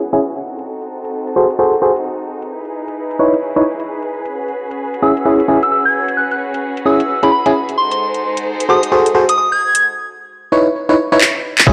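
Bouncy and soulful, this two-step UK garage passage moves at 131 BPM in 4/4 with a swung sixteenth-note feel, cut from a longer piece. Up front, a glassy, warbling FM electric piano plays vintage-sounding stabs through chorus, tape echo and a filter sweep, while a layered house drum kit of overdriven handclaps and metallic hats drives the groove. Beneath them, an intimate chamber violin section holds soft, bowed chords with light vibrato and sidechain pumping, moving through G#7b9, C#m9, and E6 harmonies. From 5.0 to 9.8 seconds a pure, gentle synth bell carries a high melody dressed in chorus, phaser and echo. A drum fill leads to 11.7 seconds, where a hollow, knocking FM bass, a punchy, tape-warm analog kick and a barely audible impact land together. The mix sits in a lush hall reverb with a dry, gritty hardware character.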